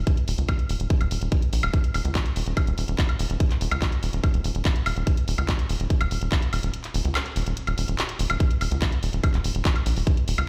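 A punchy, nasal sequencer bass sits up front in this alien, driving psychedelic trance excerpt, its sawtooth and square-wave tones shaped into a tight filter pluck with a fast attack that decays into a mellow, evolving line. A tight, layered electronic kick is also placed up front, while a garage-style kit adds handclaps, woodblock and warm hats, both drum parts re-recorded in a small room. The whole mix sounds as if played over a big sound system in a bare room with a large studio reverb, moving through a break at 6.7 seconds into a drop at 8.4 seconds.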